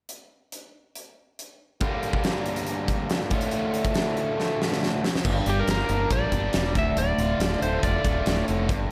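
A classic rock recording with light reverb, brooding and swaggering in D minor at 139 BPM, cut from a longer piece. A huge arena drum kit opens alone, its fat snare and punchy kick up front in a big room, before a bright, distorted, double-tracked electric guitar riff enters at 1.8 s over Gm and Dm, and a drum fill at 4.4 s leads into the final stretch. A growly fingered bass joins at 5.3 s, followed shortly by a twangy, slightly broken-up, compressed lead guitar melody.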